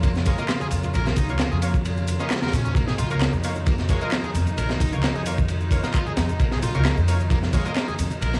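This gritty, raw breakbeat cut, taken from a longer piece, opens at once with a crunchy acoustic breakbeat kit placed up front: a tight kick, a high-tuned snare and dark ride cymbal, with a saturated, rolled-off top. The kit drives a straight 4/4 groove at 132 BPM in Bb minor, resting on a single Bbm chord, while a woody pizzicato upright bass anchors the low end and a picked fuzz guitar riff cuts through with bright, compressed distortion, tube saturation and tape echo. Behind them, a muted con sordino string section holds veiled, bowed chords with vibrato and sidechain pumping, alongside tape-warm analog drum-machine handclaps, hi-hat and shaker and very quiet, thin-skinned, low-tuned congas. At 0.3 seconds a bold orchestra-hit-like synth stab enters in the background, a layered, detuned sawtooth sound with ring modulation, a filter sweep, built-in reverb and tape echo, sounding until 7.8 seconds. 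The whole recording has a dry, hardware character with transformer saturation, cassette-tape grain and small room ambience.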